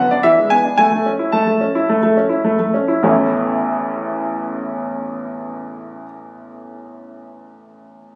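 A clear, present grand piano plays solo and up front from 0.0 to 8.2 seconds in this playful, elegant classical-period sonatina fragment in A major, moving at 107 BPM in a rubato 4/4 that slows down through the opening 3.0 seconds as an E7 chord resolves to A before a new section begins, all captured on a phone in a room with light, club-like reverb and compression.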